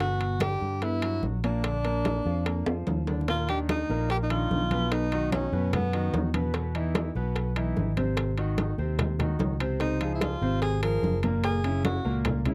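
A breathy tenor saxophone leads this lively, danceable Afro-Cuban jazz passage, its whispered, intimate solo voice full of vibrato and scooped notes with a soft attack. It sits up front, falls silent at 6.3 seconds and returns at 9.8 seconds. Underneath, a growly, amped fingered electric bass is also placed up front. A clear concert grand piano with a deep low end and long sustain accompanies a colorful chord sequence that moves from Gmaj7 through Ebsus2, Emaj7 and Ab7 to a closing Gb9. The percussion blends ringing, compressed and saturated congas, tight high-tuned bongos in a small room, both set in the background, and ringing metal-shell timbales captured close and dry, with a drum fill arriving at 2.7 seconds. The whole fragment has a dry, close 1970s studio sound with little reverb, cut from a longer piece.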